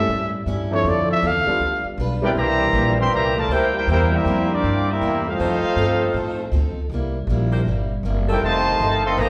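This big band swing excerpt moves at 159 BPM in 4/4 with a swinging, brassy mood in C major, and it is cut from a longer piece. A breathy, whispered solo trumpet with vibrato and a soft attack opens up front for the first 1.9 seconds, over an intimate baby grand piano whose action noise is audible until 2.4 seconds. A woody, thumpy upright bass with gut strings sits dark and forward throughout, while a boxy parlour steel-string acoustic guitar is picked from 0.1 seconds to the end. At 2.2 seconds a clear, vintage-sounding trumpet section with light vibrato takes the melody up front, joined by a trombone section carrying a second line. A warm saxophone section with vibrato and a soft attack enters at 3.5 seconds, holding sustained chords in the background as the harmony moves from A7, Dm7 and G7 toward C7 and F7. A wet recital-hall reverb gives the ensemble the roomy sound of a church or concert hall.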